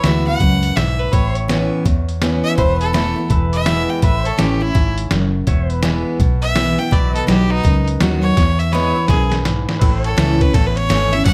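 A clear, boxy fiddle with light vibrato carries an intense solo through the first 9.8 seconds of this down-home, nostalgic honky-tonk and classic country excerpt, set in A major at 166 BPM with a swung 4/4 feel. Beneath it, a bright, full-bodied picked dreadnought acoustic guitar and a dark, round, foam-muted vintage electric bass hold the groove. A twangy, clean pedal steel adds sustained slide chords with volume swells, and a gritty, compressed, pitched-down sampler-style drum kit with a thumpy kick plays a fill from 8.4 to 9.8 seconds, all captured close and detailed in light reverb.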